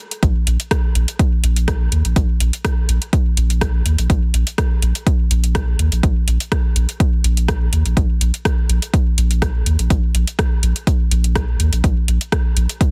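A nocturnal, hypnotic stretch of dub techno in a straight 4/4, cut from a longer piece. An electronic kick drum sits up front, punchy and layered, with an overdriven grit that gives each hit its weight. Around it, a deep house drum kit supplies hi-hat and rim click, its metallic hats also carrying overdrive. Beneath them, a round, sine-like sub bass moves between Bb1 and Eb2, its fast attack and sustained notes pumping through sidechain compression. All three parts enter within the first fraction of a second; the drums run to the end near 12.9 seconds, while the bass drops out just before, around 12.7 seconds. Everything is set in a digital ambience with a dense, heavily limited modern master.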